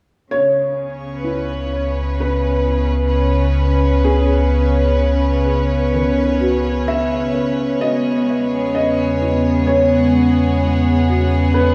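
A straight, unhurried 4/4 pulse at 64 BPM carries this serene, reflective ambient excerpt in C# minor, where a soft, boxy felt-muted upright piano with audible action noise sings a melody through diffuse ambient delay over up-front chamber strings holding earthy, lightly vibrato-touched chords and a deep, round analog bass, joined at 1.1 s by an evolving, mellow analog drone with chorus and at 1.2 s by ringing handpan arpeggios sitting in the background with their own delay, as the harmony moves from C#m9 to Emaj7 at 7.8 s inside a wet concert-hall reverb and the warbling pitch drift of worn cassette tape.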